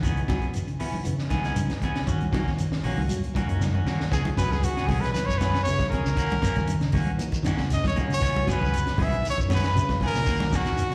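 Heard as a live gig through the venue's PA with light recital-hall reverb, this driving, funky afrobeat excerpt moves at 117 BPM in C# dorian, alternating between C#m7 and D#m7. A gritty, saturated breakbeat kit with a punchy kick and high-tuned snare is joined by a grainy shekere, hard-hand congas in the background, a round fingered bass, clean picked guitar arpeggios, twangy stabs from a slightly broken-up guitar, and a barky, lightly overdriven tine electric piano. After a drum fill at 3.6 seconds, a forceful, up-front trumpet enters at 4.1 seconds with a jazz-style solo full of scooped notes and light vibrato.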